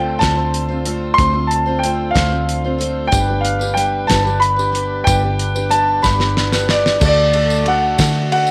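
Reflective and dusty, this short folk rock and heartland rock excerpt moves at 62 BPM in a straight 6/8, with a dark, mellow grand piano carrying the melody up front over a shimmering, octave-doubled twelve-string acoustic guitar, a foam-muted fingered electric bass and a fat tonewheel organ holding sustained chords in the background through a slow rotary speaker. A dry, mid-forward 70s drum kit with a fat snare and tight kick enters at 0.2 seconds, a jingly tambourine joins at 3.1 seconds, and a drum fill leads into a new section where a woody, intimate upright piano with audible action noise comes in very quietly at 7.0 seconds. A wet spring reverb lends the whole a gently dusty glow as the harmony moves from Dm7 to G and lands on D.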